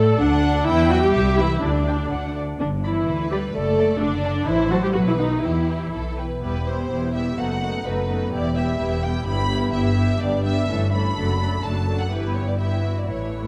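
A dark production with moderate scoring-stage reverb frames this quick, graceful and cheerful classical-period movement for string orchestra, moving at 127 BPM in 2/4 with a rubato feel, settling into E minor from 4.5 s and shifting to a new passage at 6.4 s. A close, lush violin section carries the smooth melody, while a more distant second violin section adds an expressive line with soft attacks and portamento. Up-front violas supply rich vibrato accompaniment, and a focused cello section pairs with an even, bowed double bass section on the bass line.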